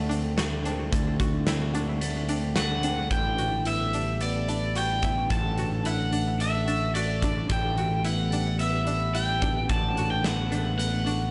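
Melancholic and brooding, this post-rock fragment sets a very quiet, clean pedal steel guitar holding sustained chords against fingered arpeggios from a hollow-bodied semi-hollow electric guitar and a twangy, string-like resonator pluck in the background, over a growling, overdriven picked bass and a huge, punchy arena drum kit up front, and a raw garage guitar enters at 2.6 seconds with a bright, overdriven melody, the mix dark and warm in a small room.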